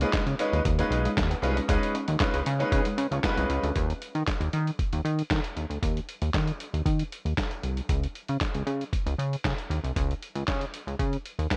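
A glossy, chorused synth bass sits up front in this slick, funky early-eighties boogie funk excerpt at 116 BPM, joined by muffled, pitched-down sampler-style drums with a thumpy kick, snare, hi-hat and handclaps, while a clear grand piano with lush chorus on a Db9 chord and a dark, very quiet, picked envelope-filtered electric guitar riff stop at 3.7 s, leaving bass and drums until a fat, mellow analog lead touches a single note in the background at 11.5 s, the whole mix dreamy and soaked in plate reverb.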